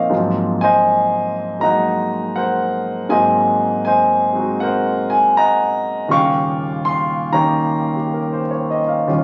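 A concert grand piano plays alone in this playful, warm solo jazz fragment cut from a longer piece, swinging at 80 BPM in 4/4 from an Ab13 chord to an Eb9 at 6.1 seconds, its intimate, polished, up-front tone carrying deep bass, long sustain and audible action noise, all captured on a phone in a club with moderate reverb and tuned to A4 = 441 Hz.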